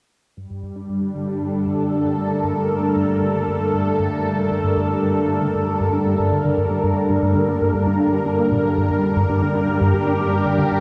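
A thick, detuned unison pad sits up front with chorus and phaser, holding sustained Gmadd9 chords from 0.7 seconds in this hypnotic, mysterious ambient piece in G minor at 116 BPM, while a punchy, ring-modulated analog bass fades in at 0.4 seconds to play a riff through lush chorus, cassette tape coloring and tape echo, all set in a vast, echoing cathedral reverb.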